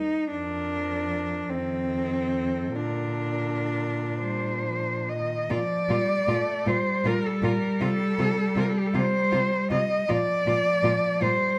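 A bowed cello sings the melody up front with a focused tone, smooth top and vibrato, over a close, even second cello line, a more distant accompanying cello and a dark, woody bass cello, in a serene, lyrical classical passage for cello ensemble in Bb major and 6/8, taken at a rubato 40-54 BPM, cut from a longer piece and set in a large studio's moderate reverb.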